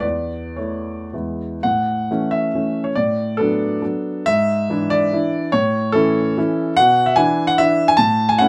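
Proud and graceful, this short fragment of a romantic classical triple-time dance in A major moves with rubato between 104 and 160 BPM. A solo baby grand piano plays it across a range from E2 to A5, its polished, present tone set up front. Its dotted rhythms carry a harmony that settles on A at 1.6 seconds and passes through Bm7/A and E7/G#. The close, detailed microphones catch every note, and a light reverb surrounds the instrument.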